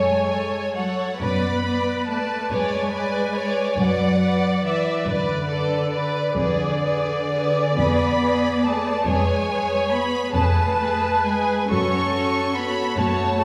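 In a slow, rubato 12/8 that breathes at about 42-49 dotted-quarter beats per minute, this yearning, elegiac romantic movement for string orchestra unfolds over F#m, G#m7b5/F#, Fdim7 and back to F#m across its 13.4 seconds. A lush first violin section carries the melody with focused vibrato and a smooth top, while a clear second violin section sings an even inner line, and the viola section adds a distant, bowed accompaniment. Beneath them, the focused cello section and a rich double bass section ground the harmony, all heard from further back in a reverberant concert hall.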